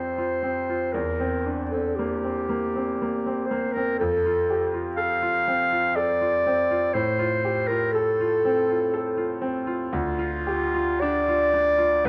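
A clarinet and a grand piano begin together at 0.0 seconds, opening this brief, melancholic passage from a longer romantic classical duo in F major. The clarinet carries the melody between F4 and F5 with a warm, classically styled tone, sitting up front as the solo voice. The grand piano supplies the accompaniment from D2 up to A4, its sound bright and brilliant yet smooth, with a vintage character and long sustain, and it also sits close at hand though a little beneath the clarinet. The music moves in a slow 3/4 at 60 BPM with a rubato feel, and its harmony passes through C7/E, F, F/A and finally Dm, leaving an elegiac shade by the close at 12.1 seconds. A moderate stone-room reverb surrounds the pair, and the dark, warm overall production gives the sound a shadowed glow.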